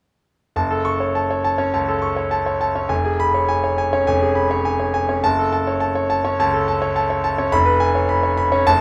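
A brilliant, up-front concert grand piano plays alone from 0.6 to 8.8 seconds in this passionate, stormy fragment of a classical virtuoso study in F# minor, moving at 104 BPM in 4/4 with a rubato feel, reaching from deep bass up to high treble as the harmony alternates between F#m and C#7/E#, tuned to A4 = 438 Hz and set in light reverb.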